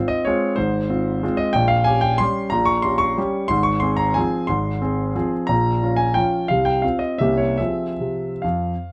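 Wistful and nostalgic, this short cut from a longer classical piano waltz in 3/4 lets a solo concert grand sway with rubato through darkly shaded minor harmonies before settling on its home chord at 7.6 seconds, the instrument sounding clear and intimate with deep bass and audible action noise, captured up close in a light reverb.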